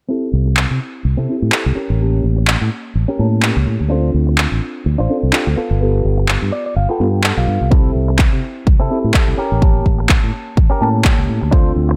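A swung sixteenth-note groove in four drives this sunny, feel-good slice of filtered disco house, cut from a longer piece. Layered electronic handclaps sit up front from 0.6 seconds, and a punchy electronic kick drum joins them only at 7.7 seconds. A fingered electric bass, bright and direct through its envelope filter, holds the low end with sidechain pumping. A twangy, compressed clean electric guitar plays the picked riff with a touch of vintage 12-bit sampler grit and adds a fill midway. A dark, mellow concert grand piano with a boxy, deep-bass tone supplies the chords through a phaser, and the piano, guitar and bass all pump and pass through a low-pass filter under a filter sweep that spans the whole passage. Light reverb surrounds the mix as the harmony moves through C6, A7b9, Dm7 and G9.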